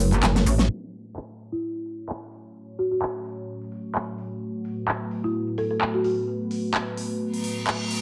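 Lightly reverberant and low-pass filtered, this bouncy, gritty bass house fragment opens with a drum fill and a burst of metallic, saturated wobble bass that stops at 0.7 seconds, leaving a moody, detuned analog pad under a filter sweep, a layered dance kit with a huge snare and crisp hats, a dry, woody marimba melody with delay from 1.5 to 6.1 seconds, and a reverse cymbal closing out the final moments.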